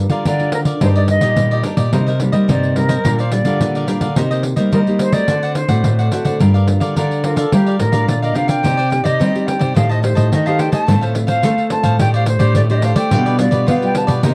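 Two fingerpicked nylon-string guitars open at 0.0 seconds, one carrying the bass line and the other comping in a full-bodied classical voice. They are soon joined by crisp, picked cavaquinho and a jingly, close pandeiro played with soft hands in this lively, yearning samba-choro in G minor at 107 BPM. An airy, distant concert flute enters at 0.3 seconds with expressive vibrato and tongued phrasing, and a dry, close 1970s-style studio sound frames the ensemble as the harmony shifts at 8.6 seconds from a Gm7–D7 cycle toward Cmadd9 and Am7b5.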